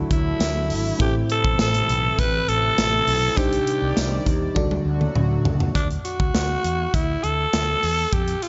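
Light reverb and a small-room ambience, with a softened top end, frame this glossy, romantic 1980s-style pop excerpt. A raspy, gritty alto saxophone with vibrato carries the melody up front over a punchy studio drum kit with gated reverb, which plays a fill at 4.6 seconds, while a dark, round fretless bass anchors the low end. A dreamy FM electric piano with chorus and phaser and a shimmering pulse-width pad supply lush chords until about 5.8 seconds, leaving sax, bass and drums to carry on.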